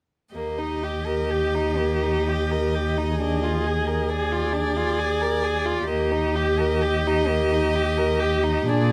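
A dark, vibrato-laden second violin opens at 0.3 s, joined almost at once by a warm, expressive melody violin with a soft attack and portamento, a rich, focused viola and a woody, close cello with an airy bow, in this tender, serene slow romantic string quartet movement in Eb major, taken at 65 BPM in a rubato 3/4 and cut from a longer piece, with light reverb around the detailed, intimate sound.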